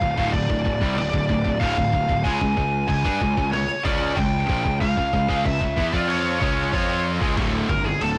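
At a steady, straight 94 BPM in 4/4, this epic, aggressive heavy metal excerpt sets a picked, high-gain lead guitar up front over three background riff guitars (one tight, one high-gain distorted, one very quiet, crunchy and double-tracked), a growly fuzz bass and a muffled, pitched-down sampler-style drum kit with a thumpy kick, moving from D minor to a C# power chord and back, with the kick and snare dropping out from 6.1 to 7.4 seconds, all in a blown-out, overdriven digital ambience.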